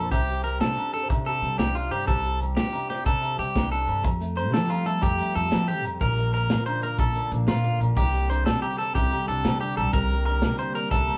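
An up-front, twangy electric guitar sits at the edge of break-up, spinning warm picked arpeggios through this joyful, danceable highlife excerpt in a straight 12/8. Beneath it, a jumbo steel-string acoustic guitar picks out the accompaniment while a woody, thumpy pizzicato upright bass on gut strings anchors the low end. A crunchy breakbeat kit, gritty and saturated with a rolled-off top, drives the groove with tight kick, medium-tuned snare and hi-hat, as ringing agogo bells and grainy maracas chatter in the background. At 5.0 seconds a warbling, lo-fi tape-like pad slides in with slow-attack sustained chords, its detuned, nostalgic haze softened by chorus and reverb. The harmony moves from Csus2 to Fadd9 and Bbmaj7 before returning to Csus2, all captured as a band playing live in one room with moderate studio ambience.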